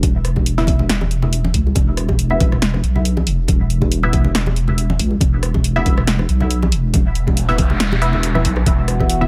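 Deep dubstep at 139 BPM in a half-time 4/4 with a light 16th-note swing, dark and meditative in mood, cut from a longer piece. An up-front, detuned wobble bass with chorus and tube saturation sits under a gritty, pitched-down kick and an overdriven deep house kit of hi-hat, rim click and punchy snare, while congas and bongos with dub echo stay in the background and a muted, phased dub chord stab joins just after the start. An electronic noise sweep runs from 7.2 to 8.7 seconds, a bright, ring-modulated drone with moving overtones arrives at 8.8 seconds, and the mix is dry.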